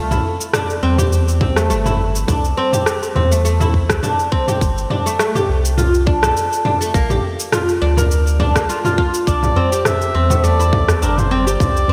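A lightly swung 103 BPM groove in 4/4 opens this earthy, peaceful organic downtempo piece in C mixolydian, with an up-front, overdriven deep house kit of cabasa, rim click and toms in gated reverb, a tight electronic kick arriving at 1.4 s, and a deep, round sub bass pumping under sidechain. Woody, double-strung oud arpeggios with delay sit up front over C6, Gsus2, Bb and Cadd9. A veiled, cup-muted trumpet melody with delay enters at 9.3 s, and a low-tuned, ringing tabla follows in the background at 9.6 s, all within a lush hall reverb and bright 1980s-style digital production.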